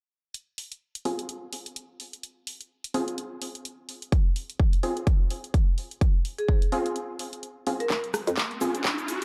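A dark, lightly reverberant production gives this short bass house cut an aggressive, swaggering mood over a swung groove. A layered dance kit of cabasa, handclaps, hi-hat and rim click sits up front in a small room, joined by bold, nasal orchestra-hit-style synth stabs built from detuned sawtooth unison with a noise layer, a plucky filter, their own reverb, digital delay and sidechain pumping. A punchy, high-passed electronic kick arrives at 4.1 seconds, and a metallic, ringing vibraphone with medium hard mallets and slow motor vibrato adds a brief, boxy melody from 6.4 seconds through digital delay. After a short break, the build-up begins at 7.9 seconds with a drum fill and a filter sweep on the stabs, while a hollow, bouncy FM bass with overdrive and sidechain pumping knocks in briefly. An electronic riser carries the passage to its end.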